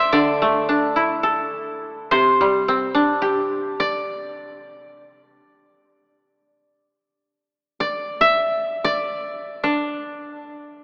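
Heard through an AM-radio filter and set in a moderate church reverb, this brief fragment of Japanese chamber music unfolds in free time in a D suspended pentatonic mode, with a calm, austere mood. Two kotos plucked with fingerpicks sit up front, their tone woody and dry: one carries the melody from D4 to E5 across the full 10.8 seconds, while the other supports it lower down, from C3 to A4, before falling silent at 5.4 seconds.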